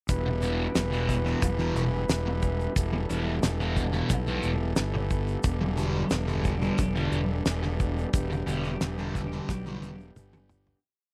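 A dry, close 1970s-style studio sound in a small room frames this short, hypnotic and dark psychedelic rock piece in E minor at 89 BPM, where a damped drum kit with a fat snare and tight kick grooves on the toms up front beside a round, overdriven fingered bass driving eighth notes. A thick, double-tracked fuzz guitar with phaser stabs short syncopated chords from 0.3 seconds, while a reedy combo organ with light vibrato holds a clean sustained pad and a grainy tube shaker sits in the background. The groove moves from Em to Gadd9/E at 5.4 seconds, then fades out from 8.1 seconds as a drum fill closes the piece.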